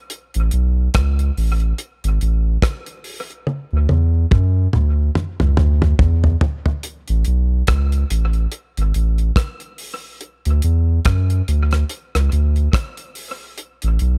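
A soft, round dub sub bass sits up front and deep, its fast-attack, sustained tone carrying this laid-back, sunny roots reggae cut from a longer piece, which swings gently in 4/4. A damped 70s acoustic drum kit, dry with a tight kick, plays hi-hat, rim clicks and toms under a dub echo, rolling into a fill from 3.5 to 6.8 seconds before the phrase repeats. The room is dry, with a faint mains hum beneath.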